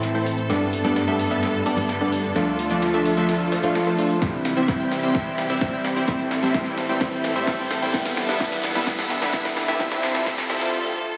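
A detuned, airy supersaw stab riff sits up front from the start over a lush bowed string section and a bright, clean picked electric guitar in the background with chorus and tape echo, all three pumping to the sidechain, joined by a house kit of punchy snare, hi-hat and shaker in a euphoric, triumphant festival progressive house build-up at 129 BPM, tuned to A4 = 438 Hz. A filter sweep shapes the supersaw as a drum fill runs through the passage, with a very quiet riser entering at 3.4 seconds and a punchy layered electronic kick joining at 4.2 seconds over chords moving from Gadd9 through Dm, C and Am. The mix is dreamy and soaked in hall reverb before a brief break at 10.7 seconds, in this passage cut from a longer piece.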